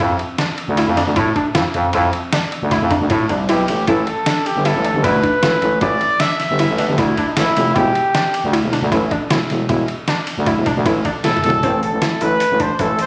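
A glassy wavetable pluck plays arpeggios over a growling, thick FM bass and a muffled, thumpy lo-fi sampler-style drum kit, opening this tense, driving progressive instrumental in 5/4 at 155 BPM in A minor, cut from a longer piece. A warm, up-front trumpet in classical style takes the melody at 3.5 s with slapback echo and plate reverb, just as kick and snare briefly drop out. A flugelhorn with light vibrato and scooped notes carries a second line from 6.8 s, and the trumpet returns alongside a drum fill at 11.2 s, all heard in a moderate studio ambience captured on a phone in the room.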